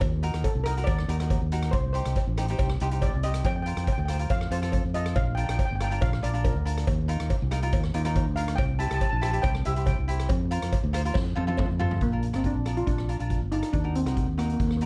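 A carefree, bouncy calypso excerpt opens with crisp picked cavaquinho, an up-front fingered electric bass, a close cowbell and a boomy, airy street-band drum kit of hi-hat, kick, rim click, snare and toms, as a shimmering, metallic double-seconds steel pan played with hard rubber sticks in a boxy small room takes a solo from 0.4 seconds, the drums play a fill from 11.2 seconds, the cowbell stops at 11.7 seconds, and the piece sits in light reverb with a dark production and a faint mains hum.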